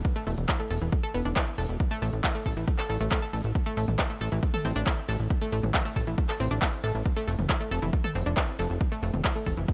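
An excerpt of euphoric, emotional uplifting trance in A minor at 137 BPM opens with a dry, punchy overdriven kick and a crisp big-room kit of handclaps, hi-hat and toms, both up front in a small room, alongside a plucky, wave-folded sawtooth bass with tube saturation and sidechain pumping, while from 0.2 seconds a round, detuned analog pluck spins chorused, tape-echoed arpeggios over E5, A5 and F5 chords in a close, dry mix.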